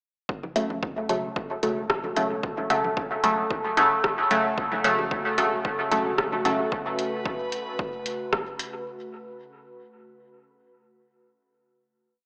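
A wet echo chamber wash with a lo-fi AM radio tint frames this short, whole piece of dub techno, nocturnal and hypnotic at 112 BPM in 4/4 with a light 16th-note swing, resting on F# minor. A punchy analog kick, re-recorded in a large room, sets down a four-on-the-floor pulse from 0.3 seconds, joined by an overdriven deep house kit of metallic closed hats and rim clicks carrying a programmed backbeat through dub echo. Up front sits a muted, detuned sawtooth chord stab on the off-beats, one shape moved in parallel through a filter sweep, colored by chorus and phaser and pumping against the kick with dub echo trails. Beneath it, a very quiet, round sub bass holds long gliding notes, while faint layered bongos and low congas echo in the background and a dark, wind-like tuned noise holds a high note from 1.8 seconds. At 4.6 seconds a breathy, mellow pad with a moving notch swells in slowly with chorus and sidechain pumping, sustaining its chords to the close.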